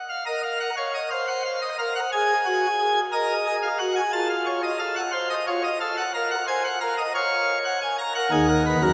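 A pipe organ on full plenum carries this short, solemn classical passage on its own, sounding from 0.1 to 8.9 seconds as a three-part fugue in the baroque style. Its mixtures give the registration a brilliant, full voicing, and the chiff at the start of each pipe speaks clearly, with the instrument placed up front. The parts span from Eb2 to Bb5 in a straight, driving 12/8, moving through Bbm, Ab5, F7, back to Bbm and on to Ebm. A cathedral-sized reverb, decaying over 6.4 seconds, surrounds the sound in a church or concert hall, while the top end is rolled off above 7.8 kHz. The clip is cut from a longer piece.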